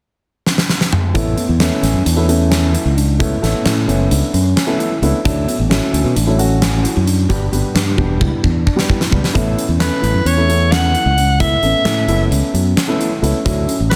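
A huge arena drum kit opens with a fill at 0.5 s, its fat snare and punchy kick up front, before a bright, direct fingered electric bass, a dark, boxy baby grand piano and a mellow tine electric piano playing arpeggios in the background launch a driving, intricate progressive groove in 9/8. The chords move from Aadd9 through Dmaj7 and G, and a second drum fill leads to a soprano saxophone that takes the melody at 9.8 s. The sax is clear and forceful, with vibrato and a smooth top, and it sits up front in this dense, heavily limited modern mix, carrying plate reverb and delay until this cut from a longer piece ends.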